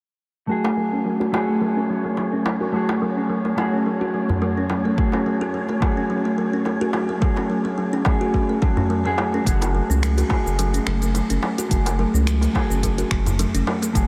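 This organic downtempo excerpt moves at 107 BPM in F# minor with a gentle swing on the sixteenths, its hypnotic, meditative mood centered on a held F#madd9 chord. A dark, clean, fingered electric guitar with subtle chorus, tape echo and a sidechain pump sits up front beside woody, hollow-sounding kalimba arpeggios that pass through tape echo and a filter sweep. Soft-handed darbuka with a clay-shell, saturated tone plays alongside them, while an airy, breathy wind-like noise layer drifts in the background. A deep, layered electronic kick enters at 5.0 seconds and drops out briefly before 9.5 seconds, where a round, sustained analog bass pumping against the beat arrives with a deep house kit of finger snaps, smooth hi-hats and shaker. From there the guitar takes a filter sweep of its own. The whole mix is soaked in a huge, dreamy reverb with a long tail, giving the piece a floating, immersive sound.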